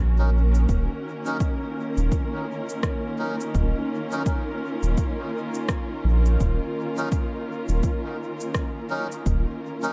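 Muted, con sordino strings hold a veiled Ebm7 chord over a round, soft sub bass while a bubbling, resonant sawtooth texture with chorus and reverb drifts in the background of this meditative, spacious ambient dub fragment in Eb minor at 84 BPM, swung on the 16ths. Reedy, breathy melodica stabs arrive at 0.2 seconds through dub echo, followed by tape-warm electronic cabasa and rim clicks, also echoed, at 0.5 seconds. A deep, overdriven electronic kick sits up front from 0.7 seconds, and the whole mix is soaked in digital echo.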